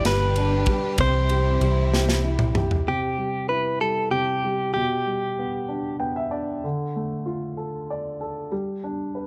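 A clean, direct-recorded electric guitar carries the melody in this heartfelt six-eight pop ballad, its picked, compressed tone shimmering with harmonic tremolo and sitting up front until 6.0 seconds. The clip is cut from a longer piece and moves at 64 BPM in C major with a straight feel, passing through G, C, G/B, Dm and back to G. A dark, mellow baby grand piano supplies the accompaniment throughout and adds a fill beginning at 5.7 seconds. At the opening, a foam-muted fingered electric bass gives a round, amped low end, and a bowed string section holds expressive sustained chords with vibrato and portamento. A modern studio kit with tight kick, medium-tuned snare, toms and bright ride cymbal plays a fill before the drums, strings and bass all fall away by 2.9 seconds. Light reverb and small room ambience give the tender performance an intimate setting.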